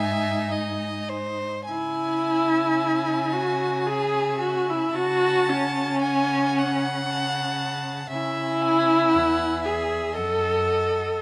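A recital hall's moderate reverb surrounds close, detailed microphones in this yearning, melancholic excerpt from a slow romantic string quartet movement in C# minor, moving in a rubato 3/4 at around 51-60 BPM. The rich viola sits up front with expressive vibrato and portamento, though its tone carries a distant quality as it carries the accompaniment. Above it, one clear, focused violin plays a second line, while the other violin holds the melody in the background, both bowed with vibrato. The cello supplies a bass of soft attack and gliding portamento. After a brief opening on G# harmony, the music settles at 1.7 seconds into C# minor and moves through F# minor before closing on a diminished chord at 10.1 seconds.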